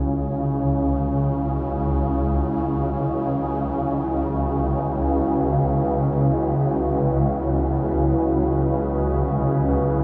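Ominous and dark, this ambient passage in free time hovers on a single C# minor chord throughout its 10 seconds, cut from a longer piece. Up front, a swarming drone spanning C#2 to C#3 churns with a tense, granular, evolving texture, its detuned unison sine voices swelling in slowly and lingering on long releases. Above it, a deep, moody pad holds sustained chords between E4 and C#5, blending sawtooth, triangle and sine tones with a sub octave, wave-folding and ring modulation for a warm, shadowed colour, softened by chorus. The pad sits further back than the drone, and both parts carry their own built-in reverb. A wet spring reverb with a 2.5-second decay gives the whole mix an echo-heavy feel.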